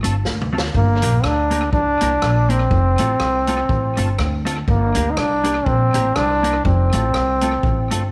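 A lightly swung 4/4 ska groove at 122 BPM drives this mischievous G minor excerpt, cut from a longer piece, as a distant, roomy big-band drum kit with a boomy kick, medium-tuned snare, rim clicks, hi-hat and toms, treated with tape echo, plays a short fill from 0.3 to 0.7 seconds. A woody, growly pizzicato upright bass sits up front, while a dark, scooped clean electric guitar with ensemble chorus comps in the background over chords moving between F and Gm. From 0.8 seconds a clear, smooth-topped solo trombone with light vibrato carries the melody up front, all in a moderate plate reverb.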